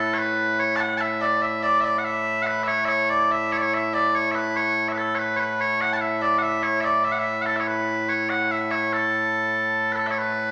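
Solo bagpipes ring out piercing and up front from the start, carrying a continuous, ceremonial line of Scottish pipe music in A major. The stirring tune moves in a steady 6/8 at 96 BPM, counted in dotted quarters, with its bright tone spanning A2 to A5. A large, wet studio reverb surrounds the pipes in this short cut from a longer piece, which ends at 10.5 seconds.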